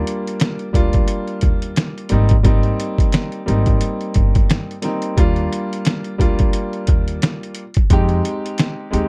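Warm and soulful, this short boom-bap hip-hop passage, cut from a longer piece, settles into a swung sixteenth-note groove in 4/4. An intimate upright piano opens at the start with smooth, vintage chords moving from Ebmaj7 to Abmaj7, back to Ebmaj7 and on to Fm9, its audible action noise sitting up front in the mix. A dusty, sampler-style drum kit enters at 0.1 seconds, the loudest part, with a thumpy kick, a fat snare and hi-hat, all compressed, overdriven and gritty, as if re-recorded in a small room. At 0.7 seconds a plucked acoustic upright bass joins beneath, woody and warm with steel strings, holding the low end. The production is dark and dry, with little reverb, keeping the piano and drums close and present.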